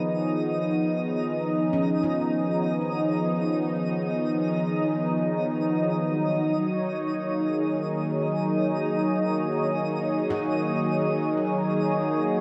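Spacious and serene, this ambient passage, cut from a longer piece, drifts slowly in a straight 4/4 under a dark, warm production. Up front, a smooth analog pad built from detuned sawtooth tones holds soft-attack chords through chorus and shimmer reverb while a filter sweep and a moving notch reshape its colour, and the harmony shifts from Fm7b5 to Ebm7. In the background, a tense, string-like bowed drone sustains a single low note, carrying vibrato, a noise layer and a ring-modulated edge as it fades in. A twinkling granular texture also fades in, its sparkling FM tones and octave-up shimmer spreading through its own reverb. A very quiet handpan of nitrided steel, struck with the fingertips, rings out airy, meditative arpeggios at 1.7 s and again at 10.3 s, all of it set in the long glow of a wet concert hall.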